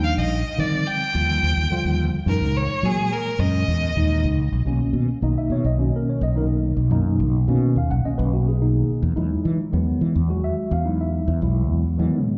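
A clear, intense bowed violin opens this slick, soaring electric jazz fusion excerpt at 107 BPM in a straight 4/4, its vibrato-laden melody touched by a slapback echo and set over an Ebmaj9 to Gb13 progression. A mellow tine electric piano supports it from the start, clean and direct with a subtle chorus and its own slapback echo, while a round, punchy fretless electric bass sits up front with a dark, amped tone. The violin stops at 4.2 seconds, and from 4.5 seconds the music settles into B major, with the electric piano and bass carrying on through Bmaj9 and then Emaj9 at 9.0 seconds until the close at 12.4 seconds. The sound is that of a live gig heard through the venue's PA, with club reverb blended into a light reverb and studio ambience.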